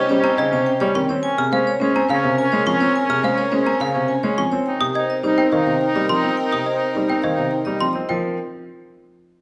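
A metallic, ringing vibraphone, struck with medium hard mallets and its motor off, carries the melody in this short slice of minimalist pattern music in F minor, cut from a longer piece and moving at 105 BPM in a straight 3/4. A clear oboe with light vibrato holds a narrow second line in classical style, while a chamber violin section, bowed sul tasto with a soft attack, sustains intimate chords in the background. An up-front baby grand piano with a natural, short sustain supplies the low accompaniment, and two layers of arpeggios weave through the texture: a mellow, round marimba on padauk bars with soft mallets, and a dark, dry trough xylophone with plastic mallets sitting higher. The harmony moves from Eb7 to Bbm7 at 1.2 seconds and Cm7 at 4.7 seconds, arriving on Fsus2 at 8.1 seconds after the oboe and violins have fallen away. A wet recital hall reverb surrounds the ensemble, lending the music a mood that is at once urgent and meditative.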